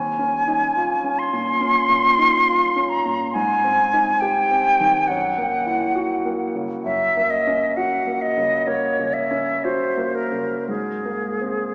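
A small-speaker sound sits inside a wet church reverb with a long 3.9-second decay, so this short excerpt from a longer piece unfolds in a resonant, hall-like space. It is an impressionist classical duo for flute and grand piano, dreamy and luminous in mood, moving in a rubato 4/4 that drifts between 54 and 71 BPM, tuned to A4 = 444 Hz. The silver concert flute carries the melody up front from start to finish, its metallic, airy tone shaded with vibrato and tongued, expressive phrasing between Ab4 and C6. Beneath it, the grand piano plays a warm, polished accompaniment with short sustain, set lower in the mix and ranging from Eb2 to G4. The harmony glides through colorful chords, opening on Eb9sus4 and passing through Abmaj7, Gb7 and Gb before settling on Abadd9 at 10.7 seconds.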